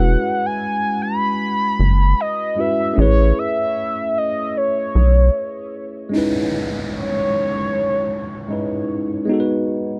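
A slow 76 BPM 4/4 groove with a 58% swing on the sixteenths carries this late-night, longing contemporary R&B passage in C# minor: a bouncy square bass sits up front until 5.3 seconds, a worn, slightly out-of-tune tine electric piano with phaser accompanies through E69, Amaj9, C#m9 and G#m7, a round, horn-like synth lead with chorus, vibrato and tape echo carries the melody until 8.9 seconds, and an electronic downlifter enters at 6.1 seconds, all within a dark, dry production.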